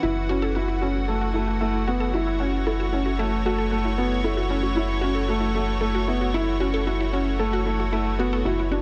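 Piano and strings electronica in F# minor at 114 BPM, this moving, hypnotic excerpt rests on a single F#m7 chord for its 8.8 seconds, heard in a moderate recital hall reverb. A felt-muted upright piano carries a mellow, intimate riff with audible action noise and delay, while a lush, detuned unison pad holds bright sustained chords with slow attack and chorus. Beneath them a round, dark analog bass sits up front on F#1, and a punchy, full-bodied unison pluck plays delayed arpeggios in the background.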